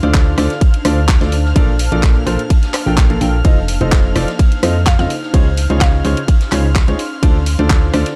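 A clear, smooth grand piano riff opens this feel-good, euphoric piano house excerpt at 127 BPM, over a layered house kit of handclaps, hi-hat, ride and rim click, with a round, punchy FM bass, a silky analog string pad and an ethereal, airy pad with built-in reverb all sidechain pumping alongside the piano. An up-front electronic kick enters at 0.1 s together with a distant, very quiet soft-mallet kit of ride and snare, while a woody, chorused synth pluck with digital delay appears briefly from 4.9 to 6.3 s over a Dm7, Bbmaj7, F7, Dbmaj9 progression in a dark, dry mix.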